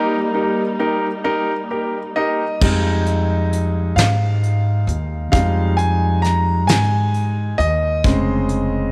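A six-eight pop ballad, aching and dramatic, this short passage cut from a longer piece opens on a clear, intimate grand piano, its action noise audible, over a veiled, con sordino string section whose bowed chords carry vibrato. The strings hold only this opening break, falling away at 2.6 seconds as the piano moves into a solo that runs to 8.9 seconds. At 2.6 seconds a woody, thumpy upright bass enters with gut-string pizzicato, sitting up front alongside the piano. A soft brush kit joins too, distant and roomy, with a fat snare, tight kick, dark cymbals and a rolled-off top. The harmony settles from Eb onto Fm7 and closes on a rootless Bbm11 over F, all wrapped in light studio reverb.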